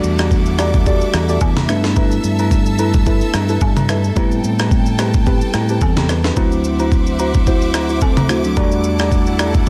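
This late-night, deep amapiano excerpt opens on a gritty, sampler-style drum kit with a thumpy kick and rim clicks, while a very quiet electronic downlifter sounds through the first 2.0 seconds and a bell-like tine electric piano spells out dorian-tinged chords from Em11 through G69, Am9 and D9. A round, punchy fingered electric bass sits under the harmony until 6.3 seconds. A soft, nasal chord stab with chorus and digital delay, a lush bowed string section pumping against the sidechain, and background agogo bells and woodblock fill out a dense, heavily limited mix.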